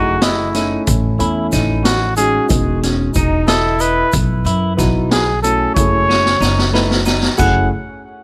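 A scooped, lightly vibratoed trumpet with analog delay leads this tense, brooding progressive excerpt in 5/8 at 184 BPM (eighths) in F# dorian, over dark concert grand piano chords, clean fingered semi-hollow guitar arpeggios and woody pizzicato upright bass, with an up-front street-band drum kit with a boomy kick and high-tuned snare joining at 0.2 s and playing a fill from 6.1 s, a grainy tube shaker sitting in the background, and a clear, close-miked flugelhorn with analog delay adding a brief second line at 3.2 s, all set in small room ambience.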